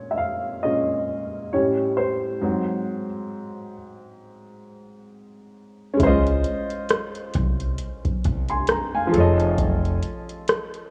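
A nostalgic, dreamy lo-fi hip hop excerpt at 67 BPM in Db major, moving with a lazy swing on the sixteenths. The felt-muted upright piano plays alone for the first 6.0 seconds, its soft, boxy tone with audible action noise colored by cassette tape and a filter sweep as it moves through Bbm7, A7 and Ab7. At 6.0 seconds the harmony settles onto Dbmaj9 and the booming analog drum machine enters with a deep kick, metallic hats and rim clicks. A pizzicato upright bass with woody, thumpy gut strings joins at the same moment and drops out at 10.0 seconds, after the chord shifts to F7alt at 9.1 seconds. Light reverb and small room ambience give the rough home demo mix a cozy, intimate feel.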